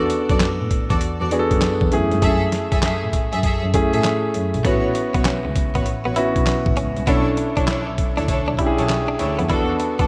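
Confident and bouncy, this short cut from a longer new jack swing R&B track rides a swung 4/4 groove at 99 BPM in B dorian. A gritty, pitched-down boom bap drum kit sits up front with a thumpy kick, a medium-tuned snare, handclaps and hi-hat, all compressed with a tape-warm sampler character. A dark, mellow grand piano, intimate and vintage with audible action noise, carries the accompaniment alongside a smooth, distant bowed double bass with vibrato. Lush, focused studio strings add bowed stabs from 0.3 s, touched with digital delay, and at 4.6 s a clean, direct-recorded electric guitar slips into the background with a picked, compressed riff and subtle chorus. The harmony moves from E9sus4 through F#m9, A69 and Bm11 before returning to E9sus4, all framed by a bright 1980s-style digital production and a moderate plate reverb.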